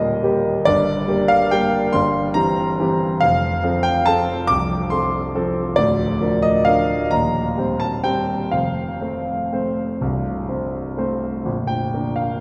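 Elegant and sparkling, this classical piano waltz in 3/4 moves with a flexible rubato feel and is cut from a longer piece. A solo grand piano, warm, natural and up front, plays throughout the 12.4 seconds, ranging from deep Bb0 up to D6. The chords run from Eb through Gm, C7/G and F, settling on Bb at 11.5 seconds, all inside the long, wet wash of a cathedral reverb from a church or concert hall setting.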